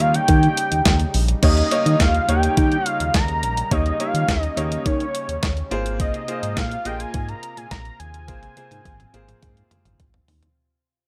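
A smooth, danceable stretch of early-eighties boogie funk opens with every part sounding together: an up-front, overdriven 8-bit drum machine, its thumpy kick, medium-tuned snare, handclaps, hi-hat, crash and toms sitting beside a dark, glossy chorused synth bass built from pulse and sawtooth waves with a plucky filter and moving notch. Above them, a fat, detuned sawtooth lead with sub octave, ring modulation, chorus and vibrato carries the melody over a clear, slightly worn grand piano and a thick, warbling unison pad held in the background, all in a dry room. From 1.4 seconds the music fades out, the chords move from Eb7 to Ab69 at 5.7 seconds, and a drum fill begins at 8.3 seconds.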